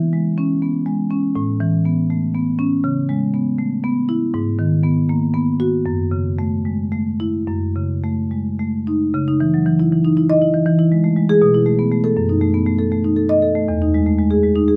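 A solo marimba played with soft mallets opens this contemporary classical fragment, its mellow, round tone sitting up front in a close, detailed recording with light reverb. The mood is flowing and reflective, moving in 6/8 with a rubato feel that lets the phrases breathe. The marimba covers a broad span from E2 up to D#5, and its harmony drifts through rich, colored chords such as Aadd9, C#m7, G#m9 and F#m9. Around 9.1 seconds a second section begins on C#madd9, passing through E and B7sus4 before settling on Emaj7. The passage is cut from a longer piece and ends at 14.8 seconds.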